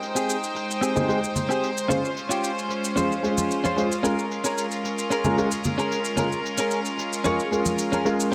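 Rich, up-front bowed strings open this sleek, cosmic nu-disco excerpt, holding floating sustained chords with a soft attack and a touch of 12-bit sampler grit, while a very quiet, gritty shaker ticks underneath. A bright, clean electric guitar picks out a riff almost at once, recorded direct and compressed, colored by lush chorus, analog delay and a low-pass filter that sweeps across the whole passage. Close, dry maracas and congas played with soft hands add ringing acoustic percussion, and at 1.0 s a dark, mellow grand piano joins with accompaniment, its intimate tone carrying audible action noise, deep bass, its own sampler grit and delay. The groove sits at a straight 112 BPM in 4/4 in Bb dorian, moving from Abmaj7 to Dbmaj7 and then Bbm7. A moderate, lush hall reverb blended with a small room gives the short fragment its sense of space.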